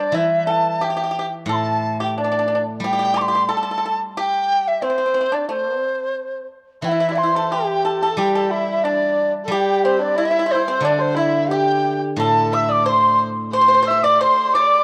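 A buzzing, airy large dizi carries the melody up front with expressive vibrato in this festive, graceful Chinese traditional chamber piece at 90 BPM in a rubato 2/4, over a bright, percussive pipa second line and a ringing, silvery steel-string zither accompaniment, joined at 6.8 s by an intimate, close erhu with a soft attack and portamento, the whole recording steeped in wet spring reverb and the warbling pitch drift of worn cassette tape in this fragment cut from a longer piece.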